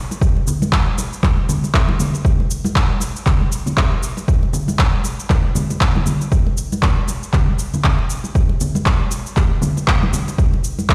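A punchy, overdriven electronic kick drum sits up front in this driving house groove, arriving at 0.2 s and carrying the most weight of any part. Set at 118 BPM in 4/4, the rhythm has a swung 16th-note feel that gives it a loose, rolling momentum. Bright acoustic congas, recorded close and dry, run from 0.1 s alongside a layered electronic shaker and handclaps that are also overdriven for extra grit. The mood is warm and driving. Light reverb and a digital ambience wrap the mix, and the sound suggests a big system playing in a bare stone room, giving it a hard, echoing character across this short cut from a longer piece that ends at 10.9 s.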